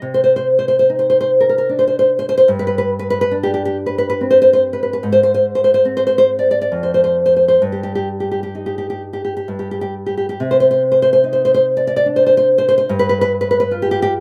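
A dry outdoor recording with only a light touch of reverb places a single nylon-string guitar up front, its dark, fingerpicked classical tone filling the whole 14.2 seconds. This is a short excerpt from a romantic solo guitar piece in C minor, set in 3/4 at a slow 64-75 BPM with a freely breathing rubato feel. The mood is intimate and wistful, the guitar ranging from F2 up to D5. The harmony moves from C minor through G5 and A-flat, pauses on a chordless passage, passes through E-flat over G, pauses on another chordless passage, and returns to C minor before settling on G7 at 12.9 seconds. The effect is private and unhurried, like a quiet reflection caught mid-thought.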